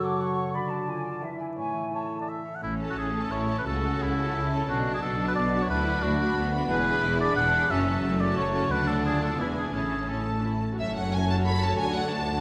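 This brief cut from a fast, dramatic romantic orchestral movement in A major and 3/4, at roughly 168-186 BPM, opens with a lively, graceful flourish of airy flutes, a mellow clarinet, distant French horn chords, an up-front oboe line and ringing harp arpeggios that carry through to the end. At 2.6 seconds the strings take over as soft-edged background violins and a lush, even bed of cellos and double basses enter, joined at 2.8 seconds by dark, expressive violins singing the melody and focused violas. The oboe drops away at 10.4 seconds, shortly before the harmony turns toward F#m7 and Dmaj7, all bathed in a wet scoring-stage reverb.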